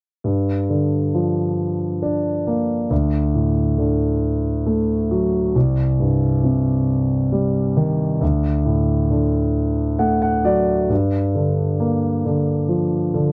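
A slow, straight 6/8 pulse at 45 BPM, felt in dotted quarters, carries this short pop excerpt in G minor. A solo concert grand piano plays throughout, its tone warm with a deep bass register and placed up front, ranging from C2 to F#5. The harmony moves through Gm7, D, Cm and D, giving the passage a dramatic, aching mood, before the piano plays a fill starting at 9.6 s. At 10.9 s a new section begins and the chords return to Gm7, and the piano carries on to the cut at 13.3 s. Light reverb adds a touch of space to an otherwise dry, close sound in the manner of a 1970s studio recording.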